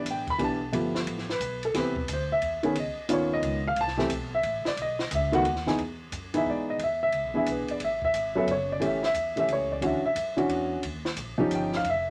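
A dark, mellow grand piano sits up front and carries the melody as a solo for the whole 12.1 seconds, its short sustain giving each phrase a clipped, intimate quality. This is a swinging, playful jazz piano trio in 3/4 at 178 BPM, with a lilting swing on the eighth notes, cut from a longer piece. A pizzicato upright bass with steel strings supplies a warm, woody low end beneath it, and a compact cocktail drum kit enters at 0.1 s with dry, dark cymbals on ride and hi-hat, a high-tuned snare and a punchy kick. The harmony first moves through colorful chords such as Em7, G9, Cmaj7 and Db9 before settling into E major at 5.8 s, where it runs through Emaj7, E7, A6 and Dmaj9. A moderate small-room ambience wraps the trio in a natural, close-knit sound.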